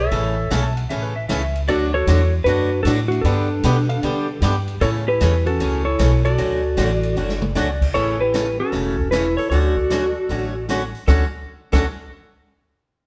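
A clean lap steel guitar opens with the melody together with a mellow clarinet second line and a woody, thumpy upright bass played pizzicato on gut strings, sitting up front. This is a down-home, swinging western swing piece in D major at 153 BPM, in 4/4 with swung eighth notes, cut from a longer performance. The lead lap steel is dark and compressed, played with fingerpicks, while a second, quieter lap steel adds a line with volume swells from 0.5 to 7.9 seconds. The clarinet plays in a jazz style with vibrato, scooped notes and a soft attack, over a bright, boxy picked acoustic guitar and a vintage drum kit with a punchy kick and rolled-off top that plays a fill at 7.2 seconds. The chords move through A, D, G and Dmaj7, and the band sounds live in one room with a moderate stone-room reverb.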